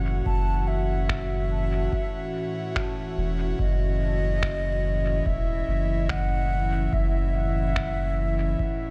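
A wooden flute and an airy, breathy pad open together, the flute's woody, vibrato-laced melody trailing dub echoes above chorused, detuned chords that hold a single F#m7 in F# dorian. This short ambient dub excerpt, cut from a longer piece, moves at a slow 72 BPM in straight 4/4 with a deep, meditative mood. A round, soft sub bass sits up front from the start, while an electronic kick with a tape-warm, small-room character enters at 0.3 seconds and stays in the background. Muffled, pitched-down finger snaps with a compressed, sampler-style grain arrive at 1.1 seconds and carry their own dub echo. Light reverb and digital ambience surround the whole, giving the crisp-attacked flute and the bright, slowly blooming pad a spacious, hazy setting.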